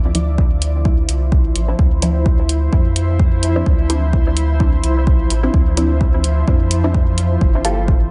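Cavernous and deep, this dub techno excerpt moves at 128 BPM in D minor with a 16th-note swing, holding on Dm9 before shifting to Gm9 at 7.4 seconds. An up-front, tape-warm kick anchors the drums alongside an electronic hi-hat, while a round, mellow sub bass and a blurred, evolving granular cloud pad with its own reverb both pump against the kick. A muted, detuned chord stab runs through a phaser and dub echo, also pumping, with a filter sweep across its length, all in a dry, dark mix that tops out at 10.8 kHz.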